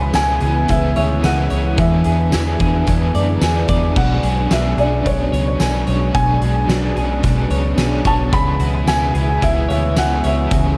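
A soft, felt-muted upright piano carries the haunting melody, its dark, intimate tone marked by audible action noise and trailed by analog delay, in this melancholic dream pop piece cut from a longer work. Beneath it, a semi-hollow electric guitar picks clean, hollow-bodied arpeggios with subtle chorus, while a double-tracked overdriven guitar sits in the background with tremolo, chorus and delay. A thick, warbling unison pad holds slow-swelling chords, a round, punchy muted bass sits up front, and an oversized low-tuned drum kit with boomy kick, fat snare, dark cymbals and tambourine enters at 0.1 s. Everything is bathed in spring reverb and an echo-heavy mix as the harmony moves from C#m7 to E7, arrives at Bm69 at 4.0 seconds, and returns to C#m7 at 8.3 seconds.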